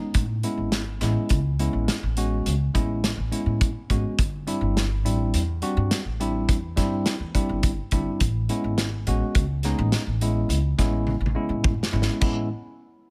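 A loose, up-front acoustic drum kit with dark cymbals, a tight kick, a medium-tuned snare and a pumping small-room sound drives this bright progressive instrumental in 7/4 alongside a woody pizzicato upright bass on steel strings and a warm, clean tine electric piano heard through its built-in speakers, moving between Amaj7 and Cadd9/G in studio reverb, with a drum fill from 11.1 to 12.2 seconds before this short cut from a longer piece ends.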